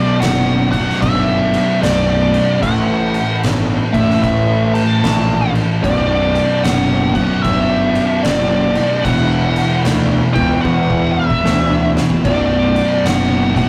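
Stoner and doom metal with an ominous, sludgy weight, this short cut from a longer piece moves in a heavy, swung 4/4 groove. A compressed, up-front fuzz lead guitar carries the melody through wah and distortion, while two picked fuzz guitars grind out the riff beneath it, one faint and mellow, the other dark and set back in the mix. A growly, overdriven electric bass with a bright, amped edge and an oversized, low-tuned acoustic drum kit join at 0.2 s, the kit giving a punchy kick, fat snare, dark cymbals and toms in a gritty, pumping stone room. Very quietly behind them, a tonewheel organ holds sustained chords with key click, vibrato and a slow rotary speaker, its tone warm and clean. The harmony moves from Bm to A5, back to Bm, then to E5 before returning to Bm, and a drum fill runs from 10.6 to 12.2 s. The rough rehearsal-room sound carries warm saturation and a moderate small-room reverb.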